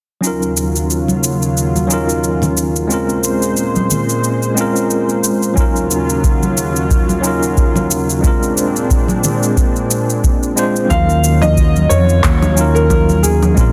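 Over a swung 4/4 groove of overdriven electronic shaker, congas and handclaps, with damped, thick-skinned congas in the background, this relaxed, wistful sunset chillout excerpt layers a clean, gritty tine electric piano with delay and a lush, warbling, detuned unison pad with chorus, adds a deep, overdriven electronic kick drum from 5.6 seconds, and brings in a boxy grand piano melody with delay and a round, punchy fretless electric bass up front at 10.9 seconds, all in light digital ambience with a dense, heavily limited master.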